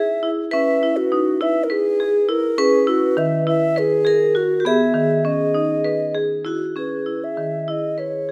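A bright, airy bass ocarina carries the melody up front, its clay tone tongued and touched with vibrato, in this urgent, hypnotic piece of contemporary chamber music in 7/8. Beneath it, a metallic vibraphone with hard mallets rings out a second line through its slow motor vibrato, while a woody, percussive marimba on rosewood bars plays arpeggios with a vintage, band-limited character. Light reverb surrounds this short passage cut from a longer work, which moves from C#m7 to F#7sus4 and back.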